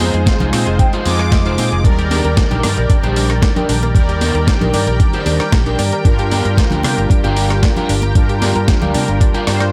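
A dry mix opens this feel-good, groovy nu-disco clip at 114 BPM in Eb major, where a gritty, overdriven electronic kick thumps over a dusty sampler-style kit of hi-hat, rim click and snare, hard-handed congas sit close in the background, a bright fingered bass with an envelope filter carries the low end, a twangy guitar at the edge of break-up plays a riff with a clean electric guitar fill from 0.3 to 1.8 seconds, and a round, brassy synth with slapback echo rides above a lush, pumping unison pad and an analog pluck arpeggio with tape echo across Fm7, Ebmaj7 and Gm7.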